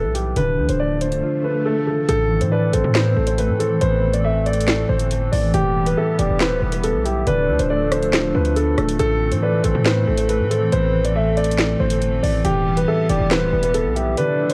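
Drill hip hop at 139 BPM in a half-time feel, this tense, ominous excerpt in A minor sets a warm, up-front grand piano melody over a ringing, thumb-plucked harp, both softened by a low-pass filter, while a punchy, heavy 808-style bass and an electronic drill kit with sharp snare, metallic hats, handclaps and rim clicks drive underneath. A background swell enters at 1.0 seconds, and the drums drop out briefly from 1.2 seconds. From 2.1 seconds a hollow, flute-like pad with chorus joins in the background, followed at 2.5 seconds by a round, octave-layered synth lead with vibrato and tape echo, over a Dm, Am and Em progression. The whole mix sits in light reverb with a worn cassette character and warbly pitch drift.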